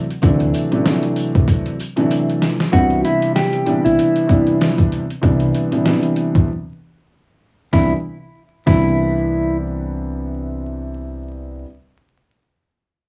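A hazy, home-taped sound with vinyl crackle, cassette grit and the ambience of a small room under light reverb frames this soulful, nostalgic boom-bap hip-hop excerpt at 96 BPM in 4/4, swung on the sixteenths and set in C lydian. A dark, intimate grand piano, its action noise audible and its tone filtered and tape-worn, carries the accompaniment throughout, moving from D9 to Cmaj9 at 2.7 seconds. Beneath it, a deep, round fingered electric bass sits low in the mix, while faint, jingly sleigh bells shimmer in the background only during the opening seconds. The compressed, pitched-down sampler drum kit sits up front, gritty and overdriven, with a thumpy kick and medium-tuned snare. It plays a fill from 1.5 to 2.7 seconds and drops out at 8.9 seconds, with a break before that in the middle of the excerpt. From 2.7 seconds a clean, fingered electric guitar takes the melody in a narrow upper range, its filtered, tape-softened tone trailed by analog delay.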